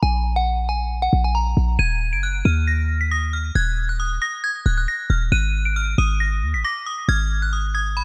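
A dry, close-sounding cut from a longer hip hop track at 136 BPM in a half-time feel, set in Eb harmonic minor with a melancholic, menacing mood. A delicate, tinkling synth tine bell carries the melody up front, softened by chorus, a low-pass filter and tape echo, over a deep, boomy 808-style bass with a sine body and a noise layer. At 1.8 s a metallic, inharmonic FM bell joins as a second line, its vintage, warbling ring lingering through chorus and tape echo as the harmony moves from Bb5 to Ebm and on to Ab5.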